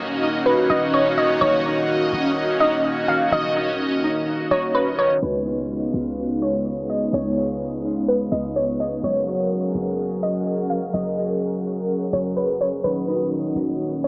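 Heard through a huge ambient reverb with a long 7.8-second tail and a muffled, small-speaker quality, this dreamy, floating hip hop excerpt moves at 126 BPM in a half-time 4/4 feel. An airy, breathy pad sits up front with detuned sawtooth and triangle tones, a noise layer, chorus and phaser, holding sustained chords that drift from D#m7 through C#9 and F#maj7 before returning to D#m7. Beneath it, a deep, boomy 808-style bass with a sine-like body gives the low end its weight. A fingerpicked concert harp rings softly in the background, its bright arpeggios filtered and echoed by digital delay, while a reversed, swelling granular texture adds shimmer with its own reverb. From 0.5 seconds a glassy, crystalline wavetable pluck carries the melody up front with chorus and delay, and a filter sweep on it begins at 5.2 seconds as the music moves into its second section.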